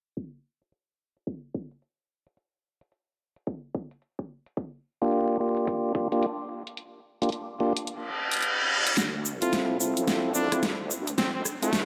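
A tonewheel organ with audible key click plays clean stabs through a stopped rotary speaker, pumping against the beat and trailed by analog delay, in this funky, playful glitch hop excerpt in D minor at 109 BPM with a swung sixteenth feel. A dubstep drum kit with a huge snare and a punchy electronic kick open under a filter sweep over a reverb-soaked, dreamy hall; the kick drops out at 7.9 seconds as a reverse cymbal swells. From 9.0 seconds a heavy, detuned sawtooth wobble bass and a grainy egg shaker join a drum fill, riser and build-up over a Dm7 chord, with a close-miked trumpet with vibrato entering at 9.4 seconds.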